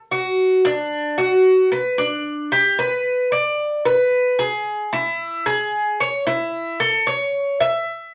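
Over a vinyl crackle, a solo acoustic Cuban tres enters at 0.1 seconds, its picked, metallic double strings, some doubled at the octave, sitting up front in a wet club reverb as it plays a relaxed, danceable Latin line in D major at 112 BPM in a straight 4/4, tuned to A4 = 445 Hz, in this short cut from a longer piece.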